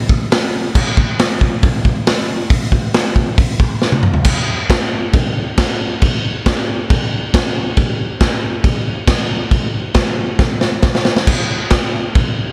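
Swaggering and raw, this rock excerpt in straight 4/4 features a single up-front acoustic garage drum kit, dark and smooth with a rolled-off top, a punchy kick, a medium-tuned snare, hi-hat, toms and crash cymbal in a bright stone room, with a drum fill at 3.8 seconds marking the move into its second section and another fill arriving at 10.4 seconds.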